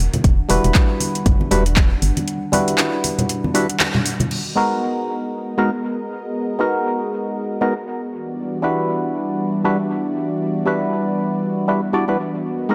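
An overdriven, deep electronic kick sits up front in this moody deep house excerpt, joined by a large-room drum kit of metallic hi-hats, handclaps and crash, bright low-tuned congas, and a hollow, dark organ-like FM bass, all with a swung sixteenth feel and sidechain pumping on the bass. A mellow, wave-folded organ stab with chorus, phaser and dub echo runs over a lo-fi, warbling tape-like pad in the background. The kick and bass drop out just before a break at 2.3 seconds, while the drum kit and congas carry on until about 4.3 seconds, and from 4.3 seconds a smooth, detuned sawtooth pad carries sustained chords through a lush hall reverb.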